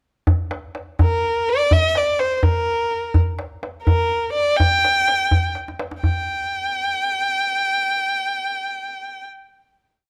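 Longing and soulful, this Persian modal ensemble piece in 6/8 opens at 0.3 seconds with a tight, up-front tombak playing a low and high stroke pattern, joined at 1.0 seconds by a single bowed violin whose rich, vibrato-laden tone, soft attacks and portamento carry an expressive, ornamented modal melody, and after a tombak fill the violin holds a final note from 6.0 seconds, heard through close, detailed microphones with light reverb.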